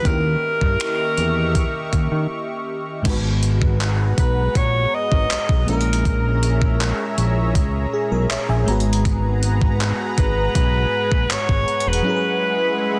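Sensual and moody, this contemporary R&B excerpt moves at 80 BPM in G# minor, with a distant, vibrato-tinged alto saxophone carrying the melody over a dreamy FM electric piano with a soft pad layer and chorus, a lush detuned unison pad holding sustained chords, and a fat, saturated analog bass sitting up front. A thumpy, overdriven 12-bit drum machine with gritty sampler character lays down kick, hi-hat, handclaps, finger snaps and crash. A break arrives at 2.3 seconds, and later the electric piano adds a fill at 7.9 seconds. Chords such as G#m9 and A#m7b5 give a jazzy richness before an electronic swell rises in the background at 11.8 seconds, all in a dense, heavily limited, dry modern mix.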